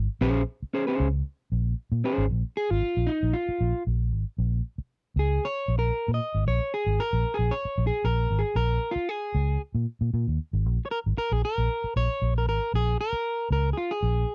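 A straight 4/4 funk groove at 115 BPM in Bb minor drives this sly cut from a longer piece, where a dark, round, punchy foam-muted fingered electric bass sits up front beneath a slightly broken-up electric guitar, while the harmony moves from a Bbm9 to a Bbm7 as a clean guitar solo arrives at 2.3 s, all captured in a dry, close 1970s-style studio sound.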